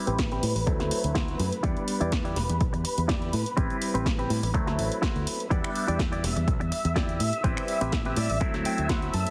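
An overdriven, nasal clav with phaser and muted, veiled strings open this nostalgic, groovy slice of filtered disco house in E minor at 124 BPM, with a swung 16th feel and most parts pumping under a filter sweep that runs the full 9.3 seconds. A semi-hollow electric guitar riff, a bright, foam-muted fingered bass, a punchy overdriven analog drum machine with finger snaps, hi-hat and snare, a barely audible tambourine and a dry, overdriven electronic kick drive the cycle of Am9, D9 and Em7 chords. A clean guitar fill arrives at 7.9 seconds, and the whole mix carries light reverb and a heavily compressed radio sound.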